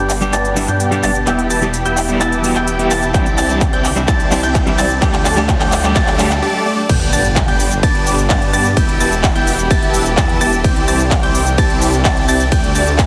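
A huge, detuned supersaw lead carries a bright riff through this euphoric festival progressive house excerpt at 128 BPM in G major, colored by phaser, delay and a filter sweep during the build-up, while a brilliant grand piano plays high arpeggios under its own filter sweep and lush bowed strings hold sustained chords in the background. A thick, menacing detuned saw bass pumps beneath the G, Em, Cadd9 and Dsus4 progression, a dark, slightly broken-up electric guitar with tremolo hovers in the background until about 6.3 s, and an overdriven big-room kit with crisp hats, claps, shaker and cymbals fills its way through the build. A punchy, up-front electronic kick arrives at 3.1 s, and a very quiet riser lands on an impact as the drop hits at 6.9 s, all within a concert-hall reverb and a heavily compressed, radio-ready sound.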